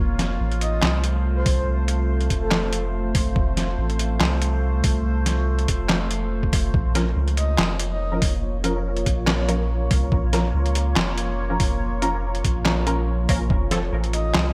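A gritty, pitched-down trip hop drum kit with overdriven handclaps, hi-hat and a medium-tuned snare sits up front in this heavy, meditative deep dubstep excerpt at 142 BPM in a swung half-time feel, joined from 1.5 seconds by a thumpy, overdriven electronic kick and underpinned throughout by a round, soft sub bass. A moody, evolving sawtooth pad with chorus and built-in reverb holds sustained chords in Bb harmonic minor, moving from F to Bbm, while a breathy, flute-like synth lead with vibrato, chorus and dub echo drifts in for brief phrases. From 7.0 seconds a muted, detuned chord stab with a filter pluck and dub echo adds short, mellow hits over a light digital ambience.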